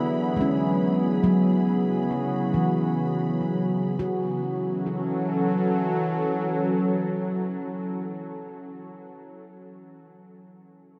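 In a straight 4/4 pulse, this spacious, melancholic ambient piece, cut from a longer work, sets a warbling, nostalgic pad of detuned sustained chords up front beside mellow, ringing handpan arpeggios carried on tape echo and a tense, string-like bowed drone with vibrato. A faint, lush violin section adds expressive texture until 4.0 s, as the harmony moves from E7 through C#7sus4 to F#m7. Everything sits in a huge, wet reverb wash with a dark, warm production character.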